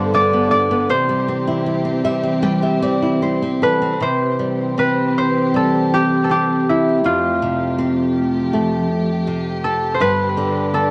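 Innocent and gentle, this lullaby-style children's piece moves at 80 BPM in 4/4 with a rubato feel, centred in C major and tuned slightly below standard pitch at A4 = 436 Hz. A mellow, ringing concert harp carries the melody up front, fingerpicked and touched with tape echo. Beside it, a fingerpicked flamenco guitar provides warm accompaniment, also close in the mix, with a nylon-string guitar fill from 1.7 to 4.0 seconds. Beneath them, a dark chamber string section holds bowed, sustained chords with light vibrato, soft attacks and a smooth top, sounding intimate and near. The harmony moves from Gadd9 to C, later shifting to Fadd9 and G, with a new section arriving at 4.0 seconds, and a moderate echo-chamber reverb lends the whole a gentle sense of space in this short cut from a longer piece.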